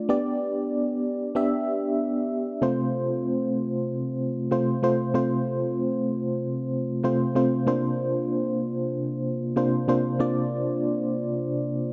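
A light reverb and digital ambience frame this short, glossy cut from a longer pop piece, with a single FM electric piano sitting up front. Played solo at 95 BPM in 4/4 with a gentle swing on the sixteenths, the instrument carries an uplifting mood across its range from C3 to E5. Its tone is dark and full-bodied, with a fast attack, decaying notes, a noise layer and a tremolo shimmer. The harmony moves from G to F over C at 2.6 seconds, where a second section begins, then settles on a B-flat add-nine chord over C at 7.7 seconds. The whole passage lasts just under 12 seconds.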